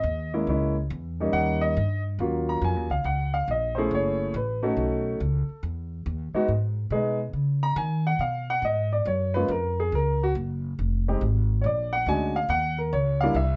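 Smoky and moody, this swinging jazz passage, cut from a longer piece, pairs an up-front, woody upright piano with long sustain against a thumpy, gut-string upright bass played pizzicato, the piano taking a solo from 2.2 seconds through a lightly reverberant room as the harmony drifts from Ebm9 toward a closing Bb7alt and Eb5.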